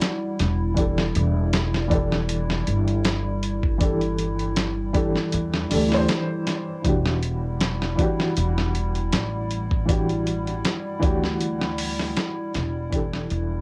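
Recorded at home onto cassette in a lightly reverberant space, this brooding, smoky trip hop excerpt has a hazy, lo-fi grain and a gently swung feel. A gritty, compressed sampler-style drum kit sits up front, its thumpy kick, medium-tuned snare and hi-hat sounding as if re-recorded in a small room. From 0.4 seconds an acoustic upright bass, plucked pizzicato on steel strings, adds a woody, tube-saturated low end alongside the drums. A dark, boxy upright piano, slightly detuned with short sustain, carries the accompaniment through tremolo and tape echo, while a warbling, nostalgic pad of detuned square and triangle tones holds slow-blooming chords bathed in chorus and plate reverb. The harmony drifts between Em9 and Gsus2/E before the whole passage fades out from 10.9 seconds.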